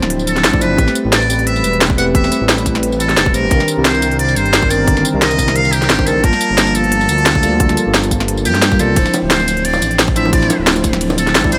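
Liquid drum and bass excerpt, soulful and melancholic, where a distant, buzzy trumpet with a metal mute carries the solo melody through digital delay over a bell-like tine electric piano with its own delay, a smooth analog pad pumping under sidechain and chorus, a deep, rumbling detuned saw bass, a tight, tape-warm electronic kick and an up-front kit of cracking snare, crisp hats, ride and tambourine, with very quiet, low-tuned bongos slipping in at 9.1 s and the whole mix sitting in a digital ambience.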